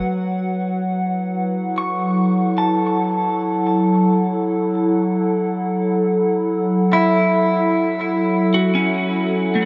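A warbly, tape-like pad and a clean electric guitar sound together from the very start of this short ambient passage, cut from a longer piece and set in free time in F# minor with tuning at A4 = 439 Hz. The pad holds a sustained F#m7 chord with a nostalgic, lo-fi character, its detuned layers softened by chorus, phaser and its own reverb, and a filter sweep runs across it from 0.1 seconds to the close at 9.7 seconds. Over it, the guitar picks bright, twangy arpeggios with a compressed, scooped tone, colored by spring reverb and delay. Both parts sit up front, the mellow pad slightly louder than the guitar. A huge, wet ambient reverb with a 7.8-second decay surrounds the whole recording, giving it a serene, spacious mood.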